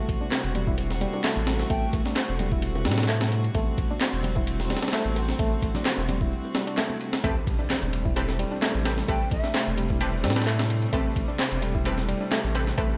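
A barky, reedy electric piano riff with light overdrive, fast tremolo and digital delay drives this swaggering, raw breakbeat excerpt at 130 BPM over Am7, with a gritty sampler-style kit (thumpy kick, high-tuned snare, ride) and a deep, saturated sub bass up front. A punchy analog drum machine adds handclaps, ride and tambourine from a large room, very quiet congas and bongos play until 7.0 seconds, and a rich, floating string section holds pumping chords in the background while a breathy, hollow jazz flute flickers distantly. After a break, the drop at 7.2 seconds shifts to Am9 and brings bold, detuned orchestra-hit-like synth stabs and a faint electronic impact.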